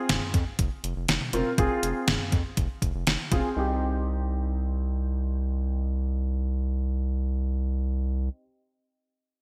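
Nocturnal and melancholic, this cut from a longer synth-pop piece moves at 121 BPM in a straight 4/4, in C minor. A warm concert grand piano carries the accompaniment in the middle register, sounding open and up front through analog chorus and a low-pass filter, with a filter sweep running over it through the opening section. Beneath it, a round analog bass blends square and sine tones into a dark, deep line with a fast, plucked attack and sustained notes. A detuned 8-bit drum machine with a thumpy kick, fat snare, hi-hat and toms drives the start, overdriven and gated with reverb, then drops out at 3.4 s. The harmony moves from F minor to C minor at 3.6 s, leaving piano and bass to carry the second section under light reverb and a bright 1980s-style digital sheen.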